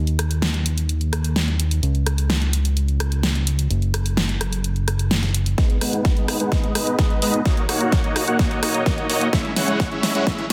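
A dense, heavily limited modern master with light digital reverb frames this short cut of anthemic, powerful festival progressive house in G# minor, moving at 128 BPM in a straight 4/4. A fat, detuned sawtooth bass opens the clip with sidechain pumping and a high-pass filter, joined almost at once by a big-room dance kit of hi-hat, rim click and a huge, soft-clipped snare, both sitting up front. At 5.6 seconds a thick, detuned supersaw riff enters with a sub octave and a moving notch, its low-pass filter sweeping as part of a build-up and drum fill, while a punchy, layered electronic kick arrives at the same moment. The supersaw pumps against the sidechain and trails delay as the chords move from G#m through D#m7 to C#m. The build runs to the end of the clip at 10.5 seconds.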